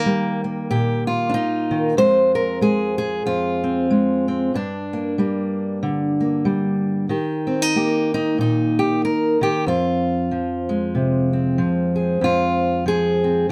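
A dark, up-front fingerpicked steel-string acoustic guitar plays alone in this haunting, intimate folk fragment cut from a longer piece, its gently swung lines moving through Eb, Fm and Gm with audible finger squeak and light reverb before shifting to a new section at 12.2 seconds.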